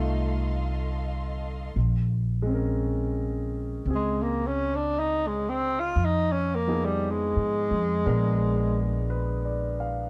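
Wistful and smoky, this slow swung jazz ballad in Bb minor moves at 57 BPM, with a woody, thumpy pizzicato upright bass up front and a clear concert grand piano with deep lows and a natural tone comping through F7, Bbm9, Fm7b5 and Bb7b9. Lush bowed strings hold smooth, vibrato-rich chords only until 1.7 s, while the breathy tenor saxophone carries the melody with a soft attack, light vibrato and scooped notes, opening into a solo at 1.8 s and stopping at 9.1 s. A mellow, roomy sax tone, light reverb and small-room ambience give this excerpt from a longer piece a dark, warm production.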